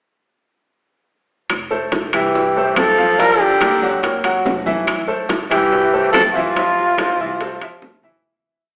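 Lively and danceable, this short Afro-Cuban jazz piece moves at 142 BPM in a straight 4/4 in F major, passing through Fmaj7, Gm7 and Gb7 before settling back on Fmaj7. A growling trumpet sits up front with a raspy, scooped, vibrato-laden jazz melody that wanders freely, though its tone comes across distant and roomy. Behind it, a bright, punchy tenor saxophone carries a harmony line mostly in thirds, while a clear, vintage grand piano plays an up-front montuno in octaves. The woody, gut-strung upright bass thumps out a pizzicato tumbao that anticipates the chords, joined by metal-shell timbales with their shell pattern and bell, saturated low-tuned bongos in steady eighths with hand bell, ringing congas with slaps and open strokes, and claves tapping a two-bar time line. Everything rings in a wet recital-hall reverb with a thin AM-radio colour, and the piece fades out from 6.6 seconds, closing on a drum fill at 7.8 seconds.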